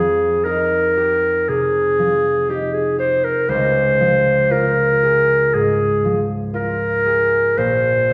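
Moving in a rubato 4/4 at about 59 BPM, this hazy, wistful impressionist duo in F minor is a brief passage cut from a longer classical piece. A warm, smooth-topped clarinet carries the melody up front between G4 and C5, while a fingerpicked concert harp rings softly beneath it from Bb1 to Ab4 over Fm9, Dbmaj7 and Bb5 chords. Both are heard from further back in a wet recital hall with a lingering reverb.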